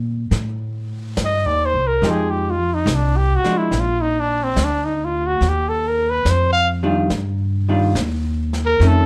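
A slow swung 4/4 at 71 BPM carries this tender, intimate jazz ballad fragment, where a woody, growly pizzicato upright bass opens at 0.0 s, brushed drums slip in at 0.3 s, a mellow trumpet takes an up-front solo with scooped notes and a smooth top from 1.2 s, and a dark, clean hollow-body electric guitar joins at 2.0 s, the harmony moving through Cm7, Fm9, Bb and Ebmaj9, all in a light reverb with a dark, warm production and lossy compression artefacts.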